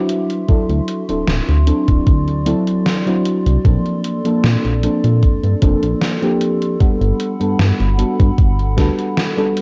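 Opening at the very start, a mellow FM electric piano with a round, full-bodied, soft tone and a fast attack that decays sits up front, colored by phaser, lush chorus and tape echo, while a warbling, lo-fi tape-like pad holds sustained chords high above it in a dark haze of chorus and built-in reverb. This short vaporwave excerpt, cut from a longer piece, moves at a slow 76 BPM in a straight 4/4 feel in G major, its mood faded and woozy. A gated 80s digital drum machine brings hi-hat and a gated-reverb snare from 0.1 seconds, and at 0.5 seconds a thumpy electronic kick and a glossy chorused synth bass with a plucked, pulse-width-modulated tone join, both placed up front. The harmony drifts from D9 to Bbmaj9 at 3.6 seconds and settles on Gmaj9 at 6.8 seconds. The drums carry a tape-warm, small-room character, and the whole production is dark and cassette-dulled, with light reverb giving it a soft blur.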